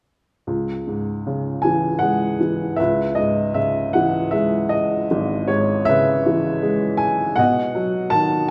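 Classical solo piano in C# minor, a dark, reflective excerpt unfolding slowly in 6/8 at 52 BPM with a rubato feel. A single upright piano plays from 0.5 to 8.5 seconds, its tone mellow, woody and intimate, sitting up front with audible action noise and long sustain across a range from G#1 to A5. A new section begins at 2.8 seconds as the harmony shifts from C# minor to C#m7, arriving on B7 at 7.4 seconds, with a wet recital hall reverb surrounding the instrument.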